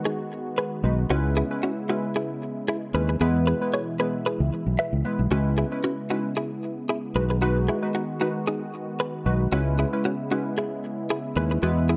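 A soft-attack sawtooth pad with chorus opens this smooth, sultry afrobeats passage at 114 BPM in C# minor, joined at 0.1 seconds by a clean, picked, compressed electric guitar riff recorded direct with digital delay, then at 0.8 seconds by glassy, detuned digital keys with chorus and a round, punchy fingered electric bass up front, all moving through G#m7, C#m7, E and G#m7/B with a swung sixteenth-note feel in a light reverb.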